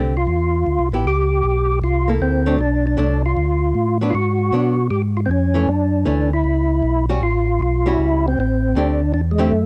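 A dark, round organ bass line and a clean, picked hollow-body archtop guitar open this bluesy, soulful soul jazz organ trio excerpt at a swinging 156 BPM. A fat, lightly overdriven organ melody with third-harmonic percussion, key click and chorus vibrato enters at 0.2 s, and both organs turn through a slow rotary speaker and sit up front. The compressed guitar comping stops at 9.5 s, all in a dry, close 1970s-style studio sound.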